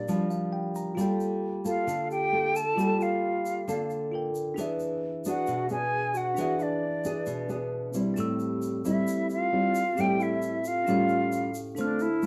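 Bossa nova at 134 BPM in an intimate, wistful mood: this excerpt pairs a pure, hollow concert flute melody with vibrato, up front, with a breathy alto flute second line that stops at 11.6 s, over a dark, thumb-plucked nylon-string guitar, a bell-like tine electric piano that opens with a brief fill, and a grainy egg shaker, set in wet studio reverb with a warm production as the chords move from Bb6 through Gm9, E7 and Am7 to Aaug7.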